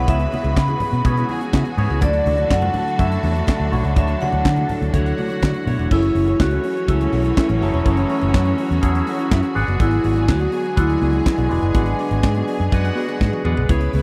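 Glamorous and danceable, this disco excerpt is led by a ringing, airy vibraphone melody played with medium hard mallets, joined by a biting violin section as a second line while a lush, distant string section holds sustained chords. Underneath, a barky tine electric piano with overdrive and phaser and a dark, clean electric guitar tucked in the background fill out the accompaniment, over a round, punchy muted fingered bass and an up-front funk drum kit with a high-tuned snare, handclaps and a drum fill at 13.2 seconds. Very quiet, bright congas play until 5.8 seconds and return at 13.7, and the whole excerpt has the dry, close sound of a 1970s-style studio.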